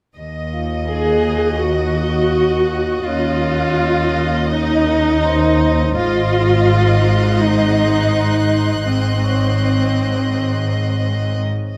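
This cinematic excerpt, cut from a longer piece, carries an uneasy, mysterious mood in a straight 4/4, its harmony moving from Eb minor to Ab at 6.0 seconds. A bowed chamber violin section holds the melody on a single high note with smooth, even vibrato, while a second violin section adds a focused texture higher still. The viola section sits up front with a rich, focused accompaniment, entering at 0.9 seconds. Beneath them, a clear, distant cello section and a close, expressive double bass section carry the bass line. A metallic vibraphone, struck with medium mallets and its motor off, rings in the background, and light reverb gives the ensemble a sense of space.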